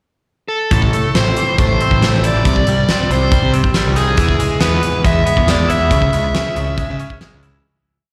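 Quiet-loud alternative rock in a brooding, cathartic mood, this short complete piece opens with a pickup bar in which a smooth, overdriven lead guitar enters at 0.5 seconds with a motif-based melody of song-like phrases, sitting up front with slapback and tape echo. From 0.7 seconds the verse arrives: a twangy, clean electric guitar plays picked, fingered arpeggios colored by harmonic tremolo and the same pair of echoes, while a fuzz-laden picked bass drives a syncopated riff. The big rock kit is acoustic and punchy, with a fat snare, a rolled-off top and a pop groove placed close in the mix. The harmony moves from Am through Cm and E to C#m, and the piece fades out from 5.9 seconds. It sounds like a live gig heard through the venue's PA, wrapped in recital hall reverb.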